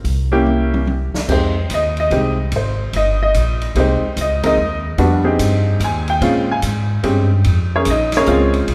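Jazz piano trio in F minor, a cool, smoky tune in 3/4 at 146 BPM with swung eighths, cut from a longer piece and set in the wet reverb of a church or concert hall. A pizzicato upright bass with a woody, steel-string tone sits up front, while the drum kit stays further back with dark cymbals and a boomy kick, playing a fill from 0.5 to 1.3 seconds over a C7b9 chord. The clear, slightly detuned upright piano enters at 0.3 seconds and takes a solo from 1.3 seconds over Fm9, moving to Bbm9 at 6.2 seconds.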